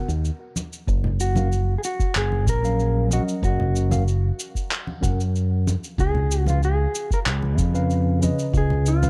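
A straight four-beat groove of gritty, compressed electronic shaker and handclaps sets a blissful, smooth sunset chillout mood, joined by background congas with a thick-skinned, hard-handed tone at 0.6 seconds and a deep, overdriven electronic kick at 0.9 seconds. Underneath, a round, up-front fingered electric bass with tube saturation anchors the chords, while a mellow tine electric piano, filtered and softened with tape echo, comps through Bmaj7, F#maj7 and C#7. From 1.2 seconds a dark, clean electric guitar carries the melody with its own tape echo, all set in a dusky, warm ambience in this excerpt cut from a longer piece.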